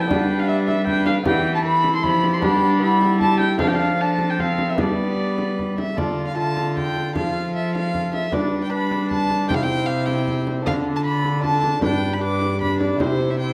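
A reverberant recital-hall sound surrounds this solemn, rustic renaissance-style consort dance in 3/4 at 154 BPM, a fragment of a longer piece. A bowed, gut-string violin carries the melody over a rich, distant viola second line, while a second viola and a delicate, fingerpicked lute with double strings fill out the accompaniment. Beneath them sit an up-front, dark cello bass and a deep frame drum. The dance moves into a new strain at 6.0 s, its harmony centred on G with turns to Dm, F and C.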